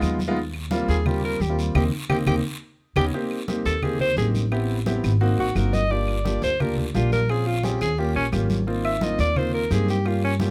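Piano, upright bass, congas, claves and guiro open this sunny, sophisticated Afro-Cuban jazz excerpt at a brisk 173 BPM in straight 4/4, with an intimate piano whose action noise is audible and a woody, up-front pizzicato bass over a raspy guiro, with bright congas and dry claves tucked behind them. At 0.9 seconds a breathy alto saxophone takes the solo, using vibrato, subtone and scooped notes with a smooth top. A band accent lands between 1.8 and 3.1 seconds before the harmony settles into lush chords such as Abmaj9, Am9 and Eb9, all heard through close, detailed microphones with little reverb.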